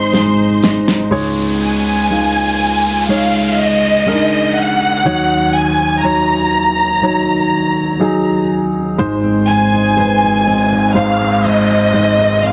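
Tender and heartfelt, this pop ballad excerpt in straight 4/4 is led by a dark, woody symphonic violin section that carries the melody with vibrato and lush, bowed ensemble tone, set up front in the mix. A mellow baby grand piano with long sustain accompanies it throughout, its low register adding depth beneath the strings. At the very opening, a smooth, even studio string section holds sustained chords in the background, a full-bodied jumbo acoustic guitar fingerpicks arpeggios, and an electronic R&B drum kit with a fat snare and warm hats plays a brief fill before dropping out at 1.1 seconds. From that point an electronic downlifter enters beneath the violins and piano, the guitar drops out at 1.7 seconds, and the harmony moves through a suspended chord and a minor seventh. The guitar's arpeggios return at 9.0 seconds, and a noise sweep runs from 9.4 seconds to the end, all within light reverb, studio ambience and a dense, heavily limited modern master.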